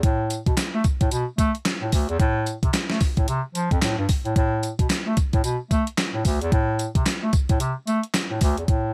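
Slick and punchy, this short cut from a longer piece is R&B in the new jack swing style, set in 4/4 with a swung sixteenth-note feel. A gated 80s digital drum machine with a sampler-style, electronic character drives it from the start, with a thumpy kick, a snare soaked in gated reverb, hi-hat, handclaps and tambourine. The kit is overdriven and sits up front, carrying a gritty small-room edge. Alongside it, a bass clarinet, also up front, plays the bass line in a clear, roomy, classical style, moving between D2 and A3 as a solo voice. Both parts start together, with the drums running to 8.8 seconds and the bass clarinet to 8.9, within an otherwise dry mix that carries little reverb overall.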